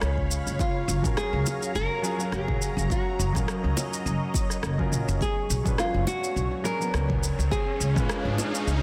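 Relaxed and warm, this sunset chillout excerpt in F# major moves at 104 BPM with a light 16th-note swing, as a woody, thumpy pizzicato upright bass sits up front under a deep-toned grand piano with digital delay and a lush, detuned sawtooth pad treated with chorus and phaser, while a deep house kit of rim click, shaker and toms with soft clipping on the snare is joined by a tape-warm electronic kick from 0.2 s, a fingerpicked nylon-string guitar carries the melody from 0.6 s, round low-tuned bongos add very quiet colour, and an electronic riser builds from 6.3 s over chords moving from C#7 through F#maj7 and Bmadd9 in a dense, heavily limited mix with light reverb.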